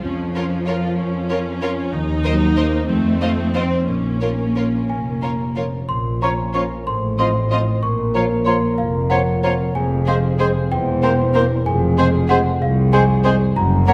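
A moderate scoring-stage reverb surrounds this playful, whimsical film cue in Bb minor, which moves at 63 BPM in 6/8 with a mischievous, magical air and is cut from a longer piece. Dark, up-front double basses and woody, distant cellos anchor rich violas and a ringing harp playing arpeggios in the background, while a clear, focused violin section carries the melody over a second violin section's smooth, lush line. A bell-like, slightly out-of-tune celesta joins the tune at 4.9 s, a hollow, airy flute, a clarinet and a close-miked bassoon arrive at 6.2 s, and a mellow, roomy horn section adds sustained chords from 6.9 s.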